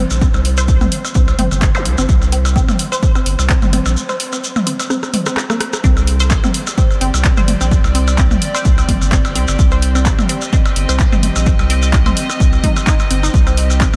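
A punchy, tape-warm analog kick sits up front in this clinical, cool minimal techno excerpt at 128 BPM in C minor, with a 16th-note swing, joined by a thick saturated sub bass, a squelchy sawtooth blip riff with chorus, phaser and a diffuse ambient delay, analog drum-machine claps, hi-hat and rim clicks, overdriven electronic blips and toms with tape echo, a mellow grainy shekere, and a very quiet zap at 1.7 seconds. A faint flickering granular texture hovers over the opening until a break at 4.0 seconds and a drum fill lead into the drop at 5.8 seconds, where a soft, floating bowed string section enters. Sidechain pumping moves the strings, bass and riff, all under light reverb.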